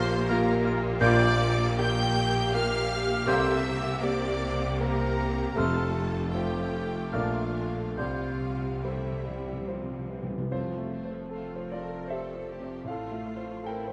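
In a rubato 3/4 at 69-84 BPM, this passionate, lush romantic excerpt in F major sets an up-front concert grand piano with deep bass and a smooth, vintage tone against an intense, vibrato-rich violin melody, while a second violin line, a quiet clarinet, a background oboe and a pure, crisp-attacked flute weave supporting lines, rich violas and a close-miked bassoon fill the accompaniment, dark French horns and distant trombones sustain chords alongside roomy trumpet stabs, focused cellos and double basses carry the bass, and hard-mallet timpani enter at 3.3 s for an articulate fill from 8.0 to 10.5 s, the orchestra set in a moderate concert hall reverb.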